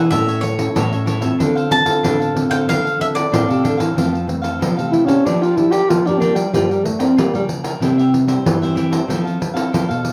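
Sunny and playful, this samba-choro excerpt moves at 94 BPM in a straight 4/4, starting in D minor with a woody, double-strung mandolin melody up front that plays until 3.6 s over crisp cavaquinho, thumb-plucked classical nylon-string guitar chords, a dark nylon-string bass line and a jingly pandeiro. As the music shifts into F major at 4.0 s, a breathy tenor saxophone enters at 4.9 s with an intimate, whispered subtone solo full of vibrato, soft attacks and scooped notes in a jazz style, sitting close to the listener. The whole band sounds set back in a wet studio room with a short ambience, cycling through chords such as Fmaj7, Gm7 and C.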